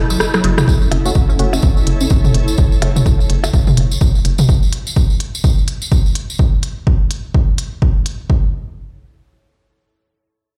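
Minimal techno at 126 BPM in F# dorian with a swung sixteenth feel, sparse and hypnotic, opening on a drum fill over a rubbery, bouncy square bass and an ethereal airy pad that both pump with the sidechain, as a squelchy resonant blip pluck with phaser and delay, a jingly tambourine, crisp-hatted garage drums with rim clicks, and dub-echoed electronic toms and blips join before the punchy electronic kick arrives at 0.7 seconds and carries on to 8.4 seconds, followed by a brief dark organ stab at 1.1 seconds, all set in a large studio reverb.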